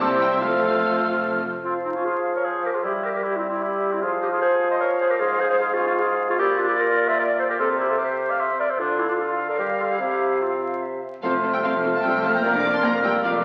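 A warm clarinet sounds throughout this cheerful, lively classical-period orchestral movement in triple time, joined by an airy, close-miked flute, a distant, roomy oboe and a mellow bassoon placed up front. The smooth, vibrato-rich violins carry the melody, and they, the violas, lush cellos, double basses and a soft-attack French horn section sound only at the opening and again from 11.2 s, framing the stretch where the winds play alone. A wet scoring-stage reverb and the crackle of a very old 78 rpm record give this fragment of a longer piece an aged sheen.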